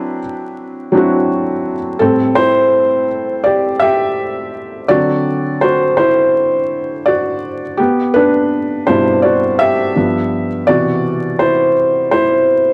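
A swung-sixteenth groove at 83 BPM in 4/4 sets up this melancholic, reflective hip hop excerpt in A dorian, carried entirely by a felt-muted upright piano with a soft, intimate tone, short sustain and audible action noise, placed up front and colored by cassette tape. From 2.0 seconds the piano takes a solo over Am7, D7, Gmaj7 and G7 before settling back on Cmaj9#11 at 10.7 seconds. Light reverb, small-room ambience and vinyl crackle give it a homemade, lo-fi feel.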